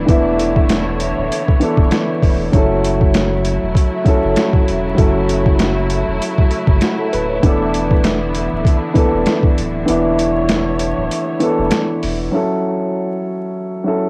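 A lightly swung boom-bap groove from a gritty, overdriven sampler-style drum kit with a thumpy kick and high-tuned snare, joined by very quiet finger snaps, anchors this dark, reflective hip-hop excerpt, where a woody, up-front upright piano and a deep, round dub sub bass sit over distant, lush bowed strings wrapped in cassette haze and vinyl crackle, before the kick drops out at 9.9 seconds and the piano carries on alone from 12.3 seconds.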